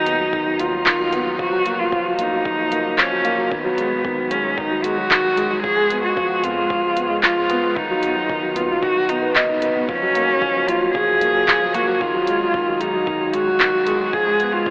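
Piano and strings electronica with a hopeful, luminous mood, where an intimate, sul tasto cello melody and a felt-muted upright piano riff sit up front, both carrying tape echo, over a round analog bass with sidechain pumping, a deep house kit of handclaps and hi-hat, and a deep electronic kick in the background, all soaked in a huge ambient reverb with a dreamy, telephone-like sound.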